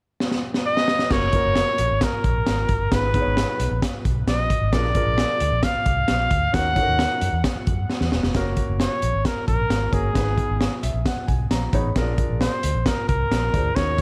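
A crunchy breakbeat drum kit opens at 0.2 seconds with a fill, kick, snare, hi-hat and crash driving a straight 4/4 at 133 BPM in uptempo 1960s-style soul, cut from a longer piece. The kit sits up front, gritty and saturated with a punchy kick, a high-tuned snare and a rolled-off top. A trumpet enters at 0.7 seconds as the up-front solo voice, with vibrato, scooped notes and a smooth top, carried on tape echo. From 1.1 seconds a dark, foam-muted fingered electric bass and a concert grand piano with deep bass and short sustain join over a progression moving through F#, G#m, A#7 and D#m7. A second drum fill leads into a new section, and the piano adds a fill of its own before the return of the A#7. The whole thing feels warm and danceable, set in a studio reverb.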